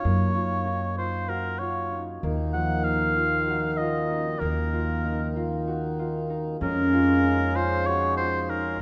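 Set in the moderate bloom of a scoring stage, this restless, playful contemporary chamber piece in 7/8 at 192 BPM (eighths) places a smooth-topped, lightly vibrato solo oboe up front over ringing, thumb-plucked concert harp arpeggios and a woody, growly pizzicato upright bass, while a reedy, breathing pedal harmonium enters at 2.2 s with sustained chords as the harmony moves from Gb through Ebmadd9 to Db/F in this brief cut from a longer piece.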